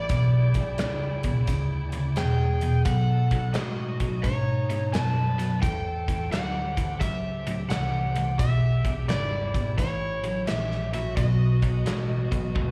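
A raunchy, driving blues rock and southern rock passage opens with a dark, overdriven slide guitar carrying the melody through slapback and tape echo, a distorted lead guitar weaving a second line, a bright, double-tracked riff from a cranked stack guitar, a growly, punchy picked bass and a very quiet, gritty tonewheel organ holding sustained chords through a slow rotary speaker. The big rock drum kit joins at 0.1 s, sitting mid-forward with a tight kick, medium-tuned snare and rolled-off top as the swung groove moves through E7#9, B7 and A7#9 changes. The recording sounds like a live club gig heard through the venue's PA, wrapped in small room reverb.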